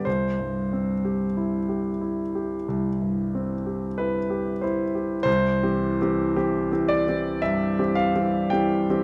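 Serene and dreamy, this brief excerpt from a longer romantic nocturne sets a solo concert grand piano in C major, unfolding with free rubato at a slow pulse of roughly 44 to 57 BPM in 4/4. The piano sounds intimate and polished, placed up front, with deep bass, long sustain and audible action noise as it ranges from C2 to G5. A moderate large-studio reverb adds gentle space around the nine seconds of playing, which open on a C chord and restate the opening phrase at 5.3 seconds.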